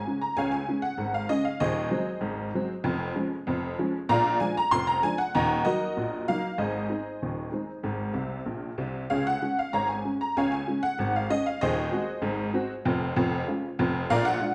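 A detuned, jangly honky-tonk upright piano plays alone from the first moment, carrying a cheerful, lively ragtime strain in Db major at 96 BPM in a straight 2/4. Sitting up front with short sustain and spanning from Eb1 to C6, it moves through Db, Ab7/Eb, Db/F, Bb7, Ebm and Ab, adding a brief fill at 8.2 seconds before returning to Db at 9.1 seconds. A moderate large-studio reverb gives the feel of a live room, and the piece is cut from a longer performance at 14.5 seconds.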